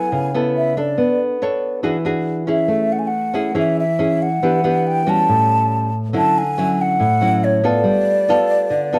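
Bossa nova in A major at 140 BPM in a straight 4/4, this short passage taken from a longer piece feels sophisticated and breezy. A concert flute carries the melody between C#5 and A5, its tone airy, mellow and hollow, with tongued notes and vibrato sitting up front. A fingerpicked nylon-string guitar accompanies in a classical manner, its woody, dark sound coloured by old strings and spanning A2 to C#5, also close in the mix. The harmony opens on a rootless F#m11 and moves through Bm9, E9, Amaj7, Em7 and A6, then shifts at 6.1 s into a new section built on Dmaj9 and G9. Both instruments play throughout, captured together live in one room with a moderate studio reverb that lends the performance a relaxed, intimate space.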